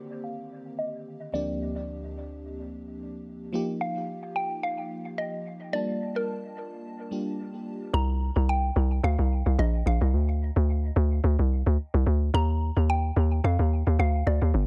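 A woody, mallet-like synth pluck melody and a lush, dreamy FM electric piano with a soft pad layer open this hypnotic, deep amapiano excerpt under a filter sweep, with chorus and dub echo hanging in a digital, echo-heavy space, until the drop at 7.9 seconds brings in an up-front, hollow, bouncy log drum bass just as the piano stops at 8.0 seconds, leaving the round, phaser-tinged pluck to carry on over the swung groove.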